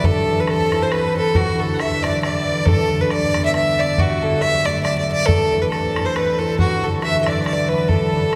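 This cheerful, lively Celtic folk waltz moves at 137 BPM in a swung 3/4, cut from a longer piece. A rich, biting fiddle with light vibrato and an airy bow carries the melody up front, while a clear, distant second fiddle plays a supporting line in the background. Ringing, fingerpicked concert harp and an open, boomy bodhran play alongside them throughout, all bathed in a church's lingering cathedral reverb of about 5.2 seconds.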